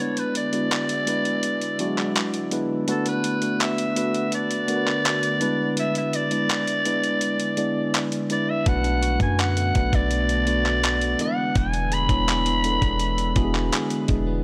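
A straight 4/4 pulse at 83 BPM drives this sensual, longing slice of contemporary R&B, cut from a longer piece, with a dusty, sampler-style drum kit of handclaps, hi-hat and a thumpy kick that sits compressed and up front from 0.2 seconds. Over it, a raspy soprano saxophone carries the melody in a clear, vintage pop-style solo with light vibrato and a touch of tape echo. A mellow tine electric piano plays close and clean beside it, while a glassy FM pad breathes ethereal sustained chords in the background, thickened by ensemble chorus and its own reverb and nudged by sidechain pumping. The harmony moves between E7 and Bm7, and for the first 8.7 seconds the low end is thin, until a deep, boomy 808-style bass arrives with a fast attack and a decaying sine tone. At the same moment a bright, compressed clean electric guitar, recorded direct, adds picked arpeggios far back in the mix, all framed by light digital ambience.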